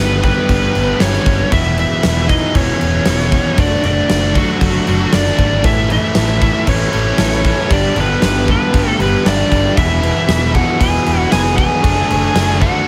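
A dark, high-gain lead guitar carries the melody from the first moment, shadowed by a second high-gain lead line set further back, both distorted and touched with slapback echo. Around them, an overdriven semi-hollow guitar with a hollow-body warmth plays a riff in the background, joined by a bright, double-tracked distorted guitar riffing very quietly, while a growly, punchy picked electric bass anchors the low end. The huge arena drum kit arrives at 0.2 seconds, up front with a fat snare, punchy kick and bright cymbals in a pumping hall sound, including crash cymbal. At 5.6 seconds a bright overdriven electric guitar joins the riffing from the background, thickening the wall of guitars. This anthemic, swaggering hard rock excerpt moves at 116 BPM in a straight 4/4, cycling through G, E, D/F# and A within a small room reverb, and is cut from a longer piece.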